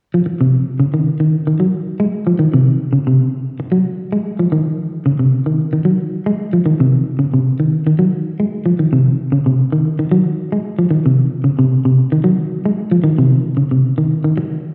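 A dark, clean semi-hollow electric guitar, fingered and up front with a slapback echo, plays low arpeggios over a lightly swung sixteenth-note afrobeat feel in this intense, defiant fragment of a longer piece, heard as a live gig through the venue's PA and bathed in a lush recital-hall reverb.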